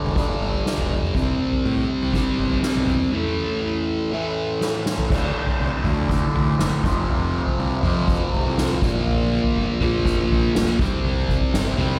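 Kaleidoscopic and hypnotic, this psychedelic rock excerpt moves at 121 BPM in a straight 4/4, built on an up-front, double-tracked fuzz guitar riff with distortion and a phaser, over a dark, round overdriven fuzz bass. A soft-mallet drum kit with a boomy kick, medium-tuned snare, toms and dark cymbals plays a fill from 4.6 to 5.1 seconds, leading into a new section. The power chords shift through G, C, A, D, F and B-flat in a small room with light reverb.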